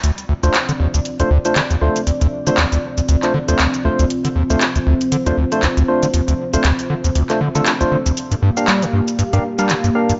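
Hypnotic and gritty, this acid house excerpt in D minor moves at 118 BPM with a swung sixteenth-note feel, sitting on Dm7 before shifting to Gm7 at 8.2 seconds. An up-front, squelchy square-wave acid bass drives a resonant, distorted riff with a filter sweep and lush chorus, while an up-front, dry electro analog drum machine lays down cabasa, handclaps and metallic hi-hats alongside a deep, detuned sawtooth pad that holds moody sustained chords. From 0.4 seconds, a barky tine electric piano adds bright, lightly overdriven stabs through a combo amp with tape echo, all set in light reverb and a digital ambience.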